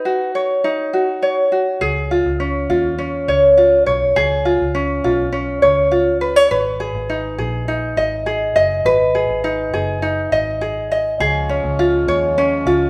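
Easy-going and heartfelt, this brief acoustic pop excerpt moves at a straight 102 BPM in 4/4, set in Db mixolydian with tuning at A4 = 445 Hz. A bright, fingerpicked tenor ukulele sits light and up front, carrying the accompaniment from the opening Cbadd9 chord. At 1.8 seconds a vintage fingered electric bass joins underneath, its amped, foam-muted tone dark and round as the harmony settles on Db and later moves to Abm. At 11.2 seconds a pedal harmonium adds sustained chords, reedy, breathing and mellow, as the progression returns to Db. The trio sounds like a band playing together in one large studio room, bathed in a wet reverb.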